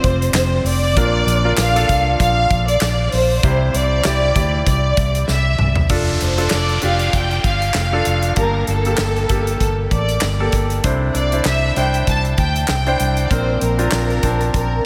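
Uplifting piano-driven pop with a light swing, where a lush, up-front violin section carries the bowed, vibrato-rich melody with analog delay over clear concert grand piano, a dark, foam-muted fingered electric bass, and a polished studio drum kit of tight kick, snare, toms, hi-hat and handclaps, while a drum fill at 5.3 seconds leads into a new section with a background electronic downlifter, all bathed in a dreamy, reverb-soaked space.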